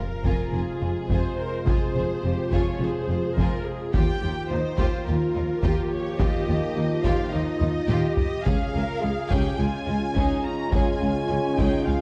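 A dark, warm scoring-stage sound opens with a huge sub drop impact in the background as this heroic, relentless stretch of epic orchestral film score begins, and solo taiko drums struck with hard sticks drive it from 0.2 seconds, adding a fill around 7.6 seconds. Lush, distant violins carry the smooth melody over a focused second violin line and close, vibrato-rich chamber violas that enter at 0.5 seconds. Shadowy French horns and punchy trombones hold sustained chords in the background while cellos and woody double basses anchor the bass, moving from F minor through Ebadd9 to Db.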